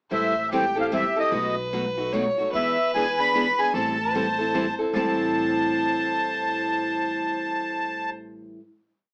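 Bittersweet and swinging, this short acoustic string swing piece in A minor moves at 149 BPM in 3/4, with an up-front, reedy accordion carrying a motif-based melody in sentence phrases, its light tremolo tuning adding a sweet, dark edge. A single bowed violin weaves a nasal, earthy counter-melody with light vibrato, while an up-front picked steel-string acoustic guitar plays rhythm on every beat, short and accented on two and three, and a growly, woody pizzicato upright bass plays root and fifth underneath. The whole piece sits in a wet club reverb with a small speaker sound, and its brief phrase settles onto a final chord at 4.9 seconds.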